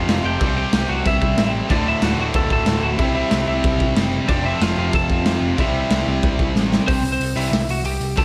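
Energetic, upbeat punk rock at full tilt, this short clip cut from a longer piece opens with a twangy, slightly broken-up lead guitar carrying the melody over bright, overdriven rhythm guitars and a growly, punchy picked bass, while a raw garage drum kit with a boomy kick, dark cymbals and a saturated, gritty character sits up front. A very quiet, double-tracked distorted guitar adds another riff layer from 1.7 to 6.9 seconds, and the chords move through C, D, C, F and C before a drum fill at 6.6 seconds tips the band into a half-time close. Slapback echo colours the lead and rhythm guitars, digital delay trails the lead, and a moderate hall reverb gives the mix a big arena sound.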